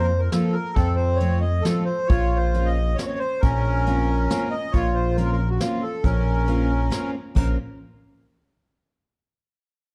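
This musette waltz, cut from a longer piece, opens with a reedy, slow-beating accordion carrying the melody from C4 to Eb5, up front over a picked steel-string dreadnought guitar and a fat, detuned sawtooth bass that all begin at once. A jazz brush kit enters at 0.3 seconds, and its boomy kick, medium-tuned snare, hi-hat and crash cymbal sound natural in a studio room. At 136 BPM in 3/4 with a straight feel, the tune sits in Bb harmonic minor, moving from Fsus4 to F and then to Bbmadd9, with a nostalgic, bittersweet mood. The guitar's full-bodied accompaniment carries audible finger squeak, while the thick, fast-attack bass sustains up front with a filter sweep. Light reverb and a dark, warm production frame the ensemble, and a new section arrives at 7.4 seconds just before the clip ends.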